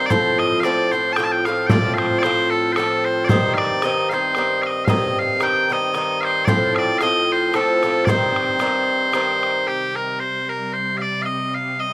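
An open-air recording with light reverb carries this spirited, dark and lively Celtic folk waltz in C dorian, moving at 113 BPM in a swung 3/4 over F and C minor chords. Piercing bagpipes sit up front with a continuous solo melody, while a picked Irish bouzouki adds metallic double-string accompaniment and a boomy bodhran sounds distant, as if in a large room. At 9.7 seconds, a clear symphonic string section enters with a bowed drone and light vibrato on a C5 chord, and it carries on with the pipes through 11.9 seconds after the bouzouki stops at 10.2 seconds.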